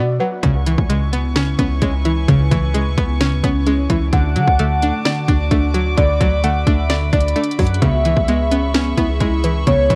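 Melancholic and menacing, this half-time trap and hip hop excerpt moves at 130 BPM in C# phrygian, cut from a longer piece and washed in the warbling pitch drift of worn cassette tape with little reverb. A string-like resonator pluck, twangy and full-bodied with chorus, carries the accompaniment throughout, while a dusty, detuned pluck with a sub octave and filter sweep spins arpeggios through chorus and tape echo. A deep, boomy 808-style bass sits up front, joined at 0.4 seconds by a trap kit with a hard-clipped kick, sharp snare and crisp hats, and by a dark, floating string section bowing soft sul tasto chords low in the mix. A velvety, wave-folded synth lead with vibrato, chorus and tape echo plays a second line, sounding only briefly at the start before returning at 4.1 seconds. The harmony moves from C#m7 to D and back to C#m7, giving the brooding groove a restless, shadowy pull.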